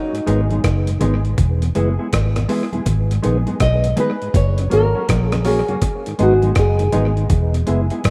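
A fingerpicked nylon-string guitar carries the melody in this short roots reggae clip, its full-bodied classical tone marked by a touch of finger squeak and a tape echo. Beneath it, a foam-muted electric bass sits up front with a round, amped sound. A mellow tonewheel organ adds lightly overdriven accompaniment, colored by chorus vibrato, a slow rotary speaker and tape echo. A compressed, sampler-style drum kit brings a thumpy kick, hi-hat and rim click with gritty overdrive and echo, joined by a clean, dark electric guitar and very quiet, damped congas played with soft hands. At 81 BPM in G# minor with a swung 16th-note feel, the chords move among G#m, E and F#, setting a laid-back, meditative mood. Light reverb and a rough home-demo mix leave the sound unpolished.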